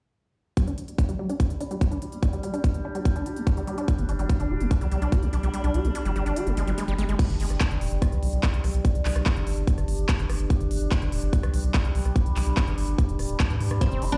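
The recording sounds as if it was played through a big sound system in a bare room and captured with a large studio reverb. This fragment of a longer psychedelic trance piece runs at 145 BPM in a straight 4/4 in G major, hypnotic and driving. A tight, layered electronic kick sits up front, joined by a big-room dance kit of crisp hi-hats, handclaps, rim clicks and crash cymbal with a tape-tinged edge. A squelchy, gritty sawtooth acid bass plays a saturated riff with cassette-tape colour, delay and sidechain pumping, and a filter sweep runs across it through the opening section. Beneath it, an evolving drone of sustained chords shifts its overtones with chorus, its own reverb and pumping. A deep, round analog bass enters at 4.0 seconds. The kick drops out at 5.5 seconds while a background swell builds toward the second section, and at 13.8 seconds a woody, plectrum-plucked oud with double strings appears up front through a phaser as the acid riff returns.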